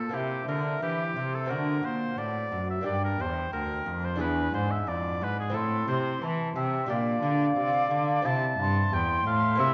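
Classical baroque-style sonata movement with continuo, a serene, dance-like excerpt at 89 BPM in 4/4, cut from a longer piece. A clear oboe with light vibrato carries the melody up front, while an airy, wooden baroque flute sings an expressive, tongued second line from a distance. Underneath, a delicate, fingerpicked lute with double strings gives bright accompaniment and a rich, gut-string cello bowed by one player anchors the bass. All four play throughout the 9.7 seconds, set in a reverberant recital hall and heard through worn, warbling cassette tape with drifting pitch and a dulled top end.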